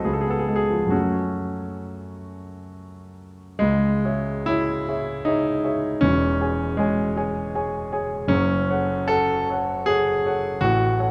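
Rubato phrasing stretches a triple metre in this brooding, passionate romantic character piece for solo grand piano, cut from a longer work. The piano sits up front with a polished, present tone and short sustain, ranging from deep bass into the treble, while a moderate concert-hall reverb and dark production give it depth. After an opening phrase, a second passage begins at 3.6 s and moves through minor harmonies until the fragment ends at 11.1 s.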